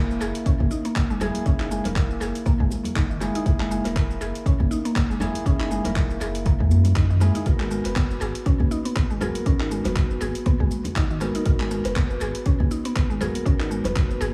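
Spiritual and driving, this afro house excerpt moves in a swung groove over two chords, F#7 giving way to G#m7 at 7.5 seconds. A deep, overdriven electronic kick sits up front beside an overdriven deep house kit of handclaps, hi-hat and shaker with tape echo, while ringing, high-tuned congas played with soft hands sit close and dry in the background, and a round sine sub bass pumps underneath. Woody, full-bodied mallet-like synth pluck arpeggios with chorus and analog delay sound alongside mellow stabs from a felt-muted upright piano, its audible action noise roughened by vintage 12-bit sampler grit and tape echo, all set in an echo-heavy small room with a faint mains hum.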